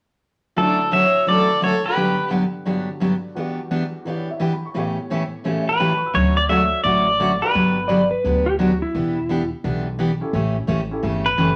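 A swung 4/4 country groove at 172 BPM in D major sets a cheerful, down-home mood in this passage cut from a longer piece. A full-bodied, picked dreadnought acoustic guitar carries the accompaniment throughout, with a slightly detuned, woody upright piano in the background, as the chords cycle through Dmaj7, Gmaj7, Em7 and A7. Up front, the pedal steel guitar plays the melody in short phrases, clean and compressed, with fingerpicks, slide and volume swells. A dark, bowed fiddle with light vibrato and portamento adds a close second line at the opening. At 6.1 seconds the second section begins and a thumpy pizzicato upright bass on gut strings enters underneath. Around 7.9 seconds a fingered lap steel guitar takes a brief second line with its own slide and volume swells, all set in a wet studio reverb with a 0.7-second decay.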